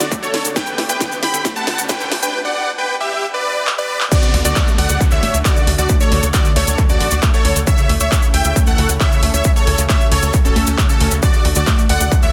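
A huge, detuned supersaw melody leads this soaring uplifting trance excerpt in D major at 135 BPM, backed by a bright, catchy unison lead, a lush pad, a round analog pluck arpeggio with vintage sampler grit, a punchy sequencer bass, a grainy cabasa and an overdriven techno kit with a cracking snare. The build-up and drum fills give way to the drop at 4.1 seconds, with a very quiet riser and downlifter running from 0.5 to 7.7 seconds. The distorted kick sits up front, the supersaw, lead, pluck and bass pump against it, delay trails the melody and arpeggios, and light digital reverb frames a dense, heavily limited master.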